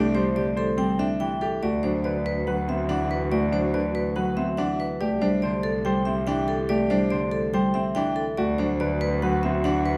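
Classical minimalist pattern music in D mixolydian, moving at 142 BPM in a straight 4/4 with a hypnotic, propulsive drive, this short excerpt is cut from a longer piece. A vibraphone played with medium hard mallets carries the melody between A4 and G5, its metallic, ringing tone close-miked, dry and up front with the motor off. Beneath it a Celtic harp, fingerpicked and acoustic, supplies the accompaniment in a low register from D3 to C4, while a clear concert grand piano with a worn, intimate character spins arpeggios between C4 and C5, its action noise audible. A mellow clarinet sits in the background with a narrow second line between F#4 and G4, and a single bowed cello anchors the bass on C2 to D2 with a rich, focused sound and vibrato. The harmony alternates between Am7/C and D13, shifting to D13 at 1.6 seconds, back to Am7/C at 5.0 and to D13 again at 8.4, all set in a recital hall reverb with a 1.4-second decay.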